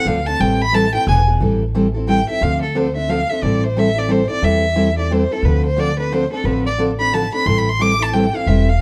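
Set in a moderate stone-room reverb with the trio playing live together, this bittersweet, virtuosic snippet of acoustic string swing in A minor moves at 178 BPM in a swung 3/4, as a close, bowed violin with a soft attack sings the melody with vibrato and portamento over a picked steel-string guitar with fresh strings and finger squeak and a woody, thumpy pizzicato upright bass on gut strings, all three up front, the chords cycling through Am7, Dm7 and E7.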